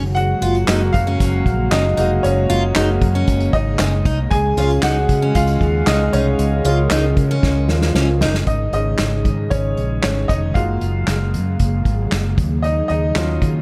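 A bright, woody upright piano leads this uplifting piano-driven pop excerpt in Db major at 115 BPM, carried by a punchy fingered electric bass and an up-front unplugged drum kit with handclaps, hi-hat, kick and snare, while a mellow French horn section and a full-bodied picked steel-string acoustic guitar riff drop out after about 8.3 seconds, following a drum fill from 7.4 seconds, and an airy, breathy chorused pad sustains throughout in the background of a dark production with a small-room reverb.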